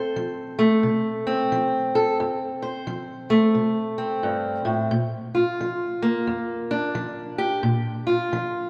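A swung, laid-back 4/4 feel carries this short, swaggering blues excerpt, where a single fingerpicked steel-string parlour guitar, dark and boxy and sitting up front, moves from F to Bb at 4.9 seconds inside the long, wet bloom of a concert hall reverb.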